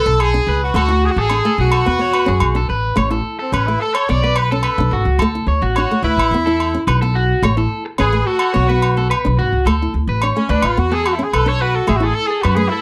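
Carefree and warm, this highlife guitar band piece moves at a straight 108 BPM in 4/4 in A major, cycling through Bm, D, Esus2 and A, and is cut from a longer piece. A punchy, bright horn section with light vibrato carries the melody up front and takes a solo from 3.0 seconds, over a woody pizzicato upright bass, twangy, slightly broken-up electric guitar arpeggios with slapback echo, a fingerpicked flamenco guitar accompaniment and ringing agogo bells that sound as if played in a small room. Light reverb surrounds the band.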